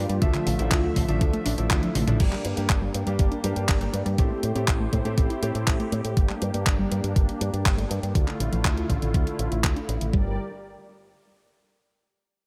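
A thumpy, overdriven electronic kick drives this danceable, melodramatic italo disco cut at 121 BPM in G dorian, backed by a sampler-style 12-bit drum machine whose crash, handclaps, hi-hat and toms also carry overdrive and a small-room re-recorded character. Beneath them, a fingered electric bass with an envelope filter holds the low end with a direct, warm tone. A smooth analog pad with chorus sustains chords through Dmadd9, Gm and Am7. Meanwhile, a lush, detuned unison pluck spins tape-echoed arpeggios in the background with a cassette tape patina, and a filter sweep moves across it from 2.2 s. A clear concert grand piano adds open, deep-bassed stabs with tape echo until 6.0 s, while a thick, dark sawtooth lead with vibrato, gritty 12-bit sampler texture and tape echo sings only a brief melody at the start. A drum fill at 1.8 s leads into the main passage, all set in a digital ambience.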